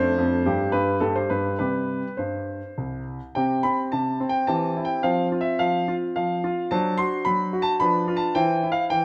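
Classical-period piano sonatina in C major, elegant and graceful, at 107 BPM in a rubato 3/4, with a solo concert grand sounding clear and up front, its deep bass and long sustain spanning C2 to C6 in a moderate recital hall reverb, as an opening phrase gives way at 3.4 s to a new passage that moves through F and D7 harmonies before settling on C over E at 8.4 s in this brief passage cut from a longer piece.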